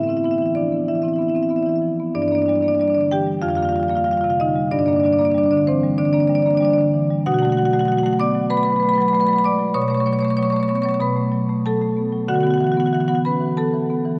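A contemporary classical piece for solo marimba, hypnotic and reflective, moving with a rubato feel as medium hard mallets draw a woody, dark tone from rosewood bars, sitting up front across a range from F2 to D6. The harmony drifts through colored chords such as Amadd9, F9sus4 and Bm7 before settling on D69, all bathed in a long cathedral reverb. A worn, warbling cassette-tape quality adds pitch drift to the sound of this short passage cut from a longer work.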